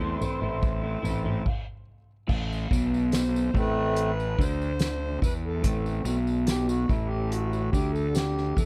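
A dry, close 1970s-style studio sound frames this trippy, mysterious psychedelic rock passage, cut from a longer piece. A dark, distorted octave-fuzz lead guitar with slapback echo carries the melody until 1.4 s, over a slightly broken-up riff from an electric guitar through a small old amp with rotary speaker, a punchy, overdriven fuzz bass, a soft-mallet drum kit with a fat snare and boomy kick, and a jingly tambourine. After a stop at 1.5 s, the reedy, breathing hand-pumped harmonium, which has held sustained chords from the start, takes a solo from 2.3 s.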